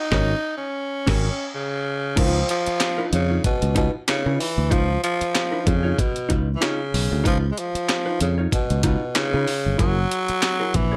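This funk cut from a longer piece moves at 94 BPM in 4/4, with a light swing on the sixteenths and a gritty, energetic mood in Db mixolydian. A growling tenor saxophone carries the solo melody from the very start, its raspy, bright jazz tone softened at the attack and pushed up front with a slapback echo. Beneath it, a fingered electric bass sounds growly and direct, sitting up front alongside a compressed, sampler-style breakbeat kit that is pitched up, with a thumpy kick, medium-tuned snare, hi-hat, handclaps and crash, all carrying a tape-warm character. A clean, dark hollow-body jazz guitar fills in the accompaniment in a higher register. The band hits an accent over the opening Ab9sus4, then settles onto Db9 at 2.2 seconds and shifts to Gb9 at 9.8 seconds. The mix is dry.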